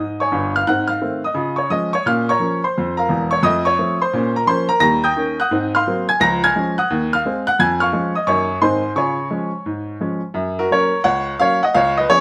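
A brisk swing at 174 BPM in 4/4 drives this playful stride-piano jazz fragment in Db major, cut from a longer piece. A lone upright piano, clear, woody and vintage with short sustain, sits up front under light reverb and close, detailed microphones, ranging from Fb1 up to Bb6. It moves through busy changes, including Ab7b9, Bbm, F7 and Ab13, before shifting to F# at 10.4 seconds for a new section that runs to 12.2 seconds.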